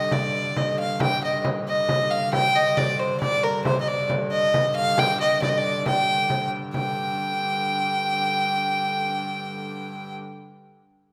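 Ancient and mysterious in mood, this short medieval dance excerpt moves at 136 BPM in a straight 3/4, tuned slightly below modern pitch with A4 at 437 Hz. A single bowed fiddle carries the melody up front between Bb4 and G5, its tone rich and nasal with a light vibrato and a smooth, even, boxy character. Beneath it a wheel-bowed, keyed hurdy-gurdy holds a low drone from G2 to D3, its sound warm and nasal, sitting well back in the balance. A small, bright frame drum played with soft hands keeps the dance pulse until 6.9 seconds, just after the music turns to a new section at 6.7 seconds. The whole is bathed in a wet recital-hall reverb with a 1.7-second decay, lending the cut-off fragment a spacious, echoing air.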